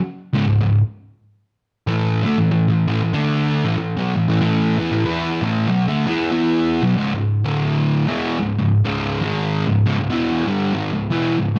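Brooding and sludgy, this short metal cut sits at 95 BPM in 4/4 with a swung eighth-note feel. A lone fuzz guitar carries everything from 0.3 seconds, picked, distorted and double-tracked, placed up front in the mix across a range from C#2 to E4. It opens on C#5 and moves to A5. At 6.9 seconds the music settles into C# minor, passing through C#5 and D5 before landing on a C#m chord. The dark production wraps the warm guitar tone in light reverb until it stops at 11.6 seconds.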